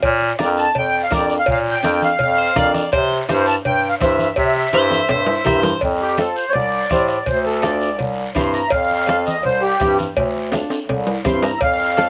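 This cumbia excerpt sounds dry and open-air, with little reverb and the close, natural feel of an outdoor take. A clear, vintage-toned bass clarinet carries the bass line from the start in a classical style. Around it, a soft-beatered bombo, ringing metal cowbell and timbales with a slapback echo, raspy, distant guiro, and bright, thin-skinned congas build a sunny, danceable groove. A reedy, sweet accordion with a light tremolo tuning sits up front on the melody, backed by a fingerpicked nylon-string guitar whose finger squeaks add a classical touch. Between 2.4 and 5.8 seconds a twangy, slightly broken-up electric guitar adds a second line. From 5.8 seconds the accordion takes a smooth solo over the shifting harmony, with drum fills arriving just before it and again near the end.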